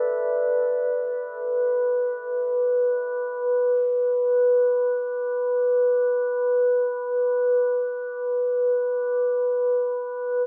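Unfolding in free time, this haunting, spacious fragment of world meditative music presents a solo glass harmonica sounding a single B4 from the opening through 10.5 seconds, tuned with A4 at 439 Hz. The instrument sits up front, its glassy, ethereal tone rising on a slow attack and held smooth and pure, trailed by a diffuse ambient delay. A huge reverb with a 7.5-second decay soaks the mix, giving it a dreamy quality.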